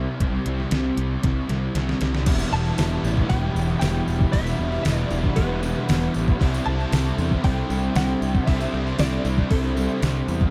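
The sound is dark and warm, with light reverb, in this cut from a longer rock piece that leans toward shoegaze and dream pop. At 116 BPM in a straight 4/4 and E minor, it opens on a C chord with a round, fuzz-soaked picked bass and a detuned 8-bit drum machine up front, its thumpy kick and fat snare overdriven and re-recorded in a small room, and a drum fill leads into the change to Em7 at 2.3 seconds. Beneath them a crunchy overdriven guitar plays a riff through reverse reverb, a very quiet thick fuzz guitar grinds out its own low riff, and a clean, compressed guitar recorded direct carries the melody up high through ensemble chorus and digital delay. At 2.3 seconds a biting, double-tracked overdriven guitar and a jingly tambourine join in the background, and from 3.4 seconds a deep, slow-attack analog pad of detuned, wave-folded square, sawtooth and triangle tones with a sub octave holds sustained chords under chorus. 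The harmony later moves to C69, keeping the mood dreamy and brooding.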